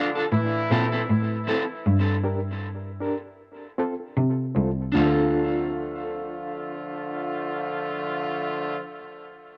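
A bowed, nasal, gut-string cello sits up front with light vibrato, carrying the bass line from 0.3 seconds in this deep, spacious 78 BPM reggae excerpt in D minor, where a dark, slightly broken-up picked electric guitar, a clear, vintage horn section in octave doubling, and a bright, lightly overdriven reed electric piano with fast tremolo in the background all ride cassette tape echo through a break from 1.9 to 4.9 seconds, moving over Am, Gm, F and Dm in a small, lightly reverberant room on a home cassette recording.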